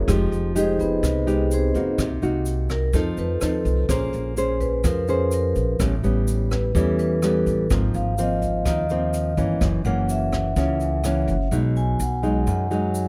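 A straight 4/4 bossa nova groove at 126 BPM sets a sophisticated, sunny mood in this fragment of a longer piece, as a metallic, ringing vibraphone played with medium mallets and the motor off takes the solo over an up-front, thumb-plucked nylon-string guitar with audible finger squeak, a woody pizzicato upright bass, a grainy, bright tube shaker, and a brushed drum kit of hi-hat, boomy kick and rim click that drops out at 11.4 seconds, all recorded dry and close through chords that begin on Fm9 and land on B6.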